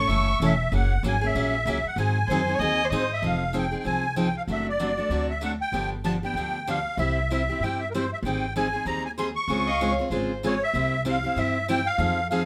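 A shimmering, reedy musette accordion carries the melody up front from the start of this virtuosic, swinging jazz manouche piece at 192 BPM, alongside a bright picked steel-string guitar accompaniment, a thumpy, woody pizzicato upright bass on gut strings, and a nasal, airy-bowed violin second line that drops out at 3.2 seconds and returns briefly at 9.7 seconds, all set in a moderate studio reverb as the harmony moves from A through G#7 into a passage that settles on C.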